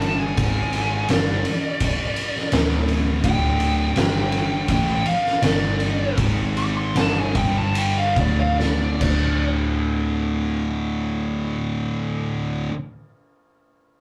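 A compressed, fuzzed-out lead guitar solo opens this hypnotic, ominous slice of stoner and doom metal cut from a longer piece, its playing slowing down from 3.2 s onward as a drum fill arrives at 8.6 s. Beneath it, two thick, distorted fuzz guitars grind out the riff, one sitting further back, alongside a round, overdriven hollow-body bass. An oversized, low-tuned drum kit with a fat snare, punchy kick and gritty, up-front crash and ride cymbals drops out at 9.2 s, leaving the guitars and bass in a rough, tube-saturated rehearsal-room sound with a moderate small-room reverb.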